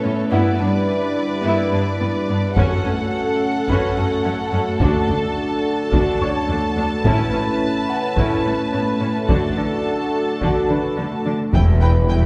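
A warm analog pad stands out at the front of this tense, futuristic hybrid orchestral and electronic film cue, its mellow, chorused sawtooth chords sustaining from the first second at 107 BPM in a straight 4/4. Lush, distant violins carry a second line above violas in accompaniment and a smooth cello section holding the bass, all bowed with vibrato, while a bright concert grand piano adds brilliant texture in the background. Taiko drums struck with hard sticks enter at 2.6 seconds, bringing a small-room acoustic punch beneath the harmony as it moves from Em7/G through F#m, D, Aadd9 and back to D. At 11.5 seconds the low end thickens on an E minor chord: a menacing, saturated detuned saw bass, a very quiet gliding synth bass with portamento, and a very quiet bowed double bass section arrive together as a clear, intense violin line touches G5. The whole cut sits in a wet recital-hall reverb with a 1.4-second decay, giving the strings a spacious, church-like bloom.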